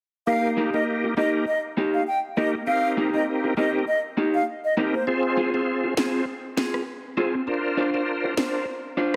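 An airy baroque flute with a crisp attack and delay carries the melody over a reedy, lightly overdriven tonewheel organ with chorus vibrato, key click and slow rotary speaker, while a dark, slightly broken-up electric guitar through a small old amp picks lo-fi arpeggios, and electronic drums with a sharp snare and rim click enter at 6.0 s in this summery, bouncy dancehall fragment at 100 BPM in Eb major, moving from Eb through Cm7 and Fm to Bbadd9 inside a lush hall reverb and a heavily compressed radio sound.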